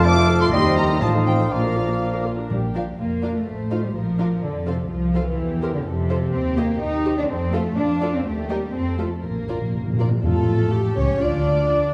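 In a straight, quick two-beat metre, this cheerful, spirited classical-period orchestral passage opens with a full tutti: bright flute, dark cor anglais, mellow clarinet and bassoon, and background French horns sustaining chords, all dropping away by about 2.3 seconds. Two violin sections carry on through the whole passage, one woody and lush on the melody, the other pure and floating on a second line, over intimate violas with sul tasto bowing, up-front cellos and dark double basses. Hard-mallet timpani sound crisp and dry at 2.5 seconds and return for a fill from 9.2 seconds, and the strings sit in the reverb of a scoring stage.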